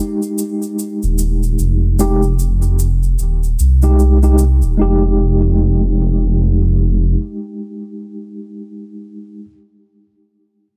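A deep, rumbling detuned saw bass, saturated and beating, sits up front from 1.0 s in this dark, cinematic trip hop cut at 75 BPM with a swung 16th feel in F minor, laid over a mellow tine electric piano with tremolo and tape echo on an Fm7 chord and a soft-handed egg shaker ringing in a small room until 4.8 s, within a digital ambience.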